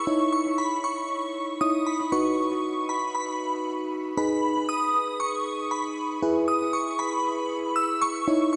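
A shimmering, detuned bell with a bright, warbling halo carries the high melody up front, bathed in ensemble chorus, shimmer reverb and tape echo, over a full-bodied, dark FM electric piano accompaniment with a noise layer, in a driving yet melancholic 117 BPM pop excerpt that moves through C#madd9, B, G#m and E within a wet spring reverb and an echo-heavy mix.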